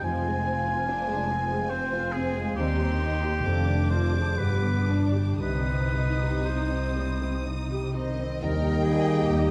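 This is a brief passage from a slow, romantic orchestral movement in triple time, with a solemn, yearning mood and a freely pushed-and-pulled rubato feel. From the opening, a rich violin section sings the melody high above a second violin section, while a distant, soft-edged oboe adds its own line. Lush violas fill the background, a ringing, fingerpicked concert harp spreads arpeggios across a broad range, and a smooth double bass section anchors the bass, joined at 0.1 seconds by an expressive cello section with touches of portamento. At 8.0 seconds a pure, metallic concert flute enters in the background with mellow French horns holding chords, and at 8.4 seconds the harmony shifts to Eb as a very quiet clarinet, a dark, tight trombone section and a mellow tuba join. The sound is dark and warm, set in a moderate recital-hall reverb.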